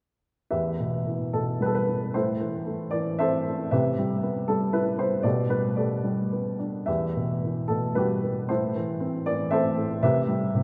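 A woody upright piano, up front, carries this brief fragment of a longer classical piece on its own from 0.5 to 10.6 s. The mood is brooding and moody, set in E minor and 3/4 time, with a lyrical, rubato feel that moves between roughly 107 and 121 BPM. Spanning E2 to E5, the piano has a short sustain, yet its notes bloom into a wet church reverb with a 3.0 s decay, giving the sense of a church or concert hall. The harmony moves through Em, Am, Cmaj7, Gadd9/B and Emadd9 before returning to Am and Cmaj7. The colour of the added ninths and major sevenths deepens the sombre, reflective atmosphere.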